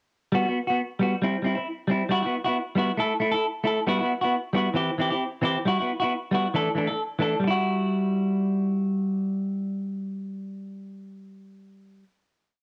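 A lone semi-hollow electric guitar carries this short highlife piece from 0.3 seconds, its clean, picked tone sitting up front with a compressed, hollow-body ring and a faint cassette-tape grain. Set at 135 BPM in 4/4 with a light swing on the sixteenths, the music feels danceable yet bittersweet, centred in E minor and tuned slightly below standard pitch at A4 = 438 Hz. The guitar plays rhythmic strumming in upper chord shapes between E3 and A4, moving through Gmaj7, C/G and Emadd9, touching A5, C/E and Dsus2 before returning to Emadd9. That Emadd9 arrives at 7.4 seconds as a final chord and rings until about 12.1 seconds. Light reverb and a digital ambience surround the home cassette recording, giving it an intimate, homespun character.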